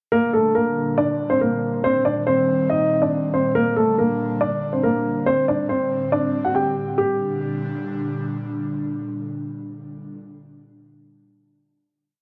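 A dark, warm production sits in a moderate scoring-stage reverb with a hint of small-room air, giving this short drill-flavoured hip hop piece a cold, ominous weight in a half-time feel. A mellow grand piano sits up front, playing a looping melody doubled in octaves that repeats like a sampled phrase, shaded by a low-pass filter and trailed by delay. Beneath it, a soft, breathy pad holds sustained chords through a chorus effect, its detuned sawtooth and triangle tones layered with noise and a moving notch, with a slow attack and long release. The harmony circles between minor and suspended colours over a breakdown. The piano falls away at 8.2 seconds, leaving the airy pad to carry the final chord alone until 10.2 seconds.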